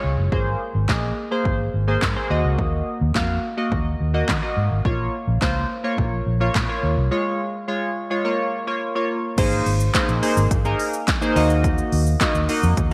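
A moderate echo-chamber reverb gives this confident, bittersweet dance-pop excerpt a roomy sheen, with glossy, detuned retro synth keys (pulse and sawtooth tones, chorus, a filter sweep) and a dark, round, foam-muted fingered electric bass both pumping against the sidechain from the start. At 106 BPM in a straight 4/4, tuned to A4 = 436 Hz, a layered deep house kit enters at 0.3 seconds with a punchy kick and snare, smooth hats, handclaps, shaker and crash. Chords cycle through Abadd9, Ebm, Bbm and Db, and a new section returns to Abadd9 at 9.4 seconds.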